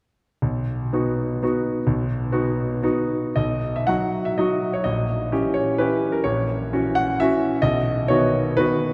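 A triple-time dance with dotted rhythms moves in 3/4 with flexible rubato, its tempo drifting between 106 and 141 BPM. This graceful, proud romantic classical passage in B major is played by a solo concert grand piano, heard from 0.4 to 8.9 seconds and cut from a longer piece. The piano sounds clear and smooth, with a deep bass and a vintage character, its notes placed up front with short sustain across a range from A#1 to F#5. The harmony settles on B, shifts to A#dim7 at 4.8 seconds, moves through F#7/A# and then returns home to B. A wet cathedral reverb with a 4.8-second decay sets the instrument in a vast, echoing space, and a second section begins at 3.4 seconds.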